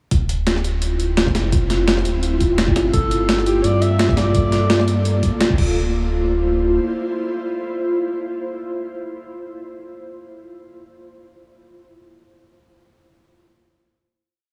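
Liquid drum and bass at 170 BPM in D minor, melancholic and lush, with an ethereal, airy pad drifting through ensemble chorus over a deep, full sub bass with octave that plays long gliding notes across Dm9, Gm9 and back. A gritty, overdriven sampler-style breakbeat kit and a thumpy electronic kick roll in a two-step feel, re-recorded in a small room, while a mellow alto saxophone with vibrato, subtone and scooped notes plays jazz-style call phrases from 2.9 seconds. The mix is dreamy and soaked in a huge ambient reverb, and the drums stop at 5.7 seconds as the pad rings on into the final hit until 9.3 seconds.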